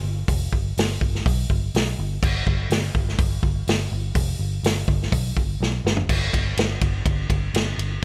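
Blues rock power trio with a southern rock swagger, this gritty, straight-feel excerpt sets a dark, round, foam-muted picked electric bass in a low register against an up-front vintage drum kit with punchy kick, medium-tuned snare, ride, hi-hat, toms and crash in a small, dry room, with a drum fill at 5.6 seconds leading into a new section at 6.1 seconds.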